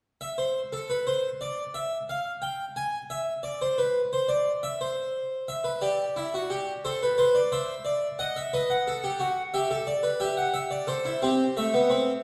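In a straight, steady 4/4, this contemplative, serious baroque-style fugue unfolds in four voices on a solo harpsichord, which enters at 0.2 seconds and plays across a span from A3 to G#5. The instrument sounds plucked, brilliant and full, a French-style harpsichord with three sets of strings placed up front, while the recital hall adds a reverberant, distant sheen. From 5.5 seconds, the counterpoint settles onto a sombre minor-key progression that returns to its home chord as this fragment of a longer work breaks off.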